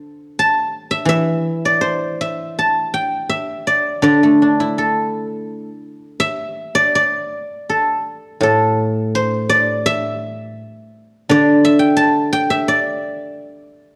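Elegant and longing, this short fragment of traditional Chinese solo plucked-string music features a single guzheng, played with fingerpicks and placed up front, unfolding in a free, rubato feel across a range from A2 to A5. Its silvery, ringing tone sits within a moderate recital-hall reverb and a dark overall production, and the music moves into a new section at 8.4 seconds before the fragment ends at 14.0 seconds.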